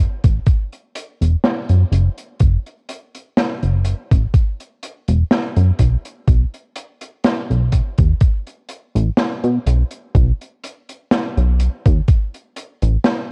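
A mellow, chorused synth bass with a glossy, retro pulse-wave and sawtooth tone opens this hazy, melancholic vaporwave excerpt at a slow 62 BPM in F# dorian, joined at 0.2 s by a thumpy, sampler-style electronic kick and a small-room jazz kit with hi-hat and a medium-tuned snare, all set dry and up front under a worn, warbling cassette-tape haze with drifting pitch and a lightly swung sixteenth-note feel.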